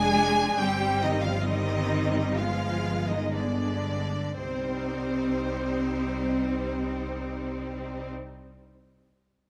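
Elegiac and solemn, this brief excerpt of a slow romantic movement for string orchestra unfolds with rubato and a slowing pulse over its first 4.4 seconds, as an up-front, rich first violin section carries the melody above a dark second violin line with expressive portamento, a clear, distant viola accompaniment, a focused symphonic cello section and a bowed double bass section with vibrato, heard within a moderate scoring-stage reverb.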